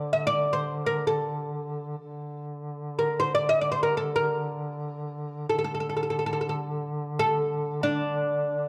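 Passionate and festive, this short excerpt of a Persian modal ensemble in free time, set in the D dastgah homayun, features an up-front, woody fretless oud plucked with a plectrum on double strings carrying the melody from D4 to Eb5+45c, over a distant, roomy duduk drone on D3 with soft attack, vibrato and scooped notes, all placed in a moderate recital-hall reverb with a dark production.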